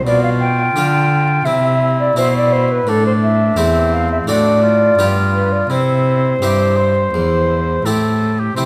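A moderate recital hall reverb, about 1.6 s long, gives this short cut from a longer baroque-style sonata movement a serene, radiant glow. It moves at an unhurried 85 BPM in a straight 4/4, in C major, with the instruments tuned to A4 = 439 Hz. An oboe carries the melody from 0.1 s with a warm, smooth-topped tone, light vibrato and soft attacks, played in a poised classical manner. A concert flute takes the second line with a pure, straight, tongued sound. Beneath them, a single bowed cello sits close and up front, its clear, focused tone touched with vibrato, while a flemish-style harpsichord fills in a plucked, brilliant accompaniment, its octave strings adding sparkle. The harmony passes from G7 over B through C, A minor, D7 over A and G7 before settling back on C.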